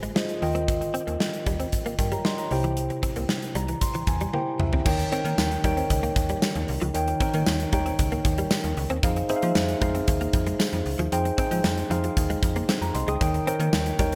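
From the start, a mellow tine electric piano with lush chorus carries the chords of this moody, dramatic 1980s-style pop excerpt at 115 BPM, alongside a snappy, metallic FM slap-like bass, a clean, compressed direct-recorded electric guitar riff in the background under ensemble chorus and digital delay, and an up-front gated 80s drum kit with a tight kick, airy gated room, tambourine and toms. An electric piano fill from 3.3 s and a drum fill at 4.3 s lead into a new section at 4.9 s moving through Eb7 and Fm7, set in a moderate hall reverb with bright 1980s-style digital production.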